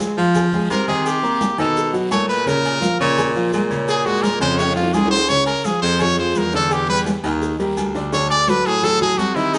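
A brilliant, punchy trumpet solos up front with light vibrato and scooped notes from 0.7 s in this fiery, driving Afro-Cuban jazz excerpt at 170 BPM in Bb minor, over a clear, intimate grand piano with audible action noise, a warm baritone saxophone with vibrato holding down the bass, ringing congas, agogo bells and timbales, a round low-tuned cowbell, a raspy guiro and grainy, saturated maracas, with a drum fill at 4.6 s and the live band captured in a wet stone room with a faint mains hum.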